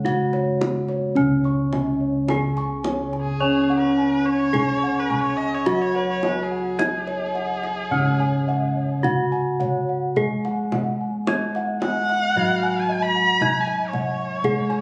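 Ceremonial and shimmering, this excerpt of Javanese gamelan unfolds at an unhurried pace in a straight four-beat feel. A bright, airy bronze metallophone struck with a horn mallet carries the melody over a mellow, close-miked and dry metallophone accompaniment played with padded disc mallets. Dark, round bossed gongs anchor the bass, while a second set of bossed gongs and, from 1.2 s, a soft metallophone in paired tuning spin high arpeggios, the latter glinting with beating tones in the background. A tight, vintage-sounding kendang with a band-limited tone keeps the percussion going, and at 3.2 s an erhu enters up front with a warm, expressive second line full of vibrato and portamento, touched by slapback echo. The ensemble sits in a moderate recital-hall reverb, captured on a phone in the room with club ambience and compression.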